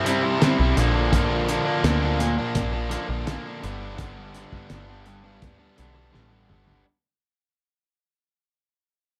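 Classic rock at a swaggering, driving 84 BPM, this short fading clip sets a biting, up-front overdriven guitar and a brighter overdriven semi-hollow guitar on a riff over C, Bb and G, with a dark, round, foam-muted overdriven bass below and a cloth-damped, thuddy, lo-fi drum kit (fat snare, tight kick) entering at 0.1 s and closing with a fill from 6.1 s, all in a moderate studio reverb.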